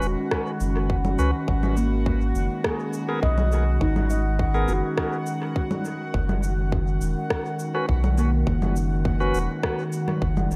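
A soft, round dub sub bass sits up front in this deep, spacious ambient dub excerpt, its mellow low notes sustained beneath everything in a straight 4/4. Around it a warbling, nostalgic pad holds lo-fi, detuned chords thickened with chorus and reverb, moving from F#sus4 to G#madd9 and back. A reedy, bright tonewheel organ punctuates with clean stabs thrown into dub echo until 9.4 seconds, while a bubbling, resonant stepped-filter texture glints higher up. The drums are electronic and overdriven, with a tight kick arriving at 0.3 seconds and a shaker, rim click and congas trailing dub echo, all sounding as if replayed in a large room. From 1.8 seconds a handpan adds ringing, meditative arpeggios of airy steel struck with soft fingertips, echoed by delay, and a light digital ambience frames the whole piece.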